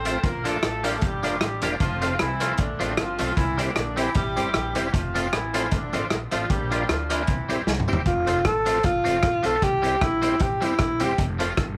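A clear alto saxophone with vibrato takes a solo at 8.1 seconds in this joyful, cheerful ska cut. Before it, a dark, punchy horn section doubled in octaves carries the melody with slapback echo until 7.6 seconds, leading into a drum fill from the up-front vintage kit with its boomy kick and pumping room. Underneath, a woody pizzicato upright bass, a twangy, compressed clean electric guitar with analog chorus and slapback echo, a smooth tonewheel organ playing stabs through a fast rotary speaker in the background, and a very quiet jingly tambourine fill out the lightly swung groove, all set in light reverb and small room ambience with vinyl crackle.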